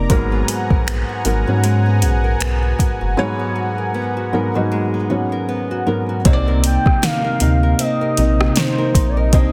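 A muted, intimate felt-covered upright piano with audible action noise sounds from the very start of this sensual, longing contemporary R&B piece at 78 BPM, together with a slow-attack analog pad with chorus, a fingerpicked flamenco guitar playing arpeggios through digital delay, and a deep sine-and-triangle sub bass doubled at the octave, all settling onto an Abm9 chord. A produced, up-front drum kit of soft kick, fat soft-clipped snare, metallic hats, rim clicks and finger snaps rides a swung sixteenth feel, with a break at 3.2 seconds before the harmony shifts to Cm9 at 6.3 seconds. At 6.7 seconds a detuned, gliding portamento lead with vibrato, chorus and delay enters, set in light reverb within a dense, heavily limited modern master.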